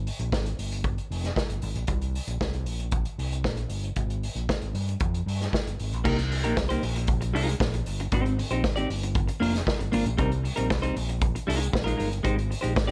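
A straight 4/4 disco groove drives this danceable passage, cut from a longer piece. A vintage acoustic drum kit sits up front in a small, pumping room, with a punchy kick, a medium-tuned snare, hi-hat and dark crash cymbals, its top end rolled off. An overdriven fingered electric bass opens at 0.0 s, amped and warm, moving through an opening stretch that sways between Absus2 and G7 (third omitted), with a brief chordless gap before Gmadd11. At 6.0 s a clean electric guitar enters, picked, compressed and twangy, as the second section cycles through Cm7, Bb7sus4, Abmaj7 and Gm7. All three parts sit forward in the mix, surrounded by studio ambience.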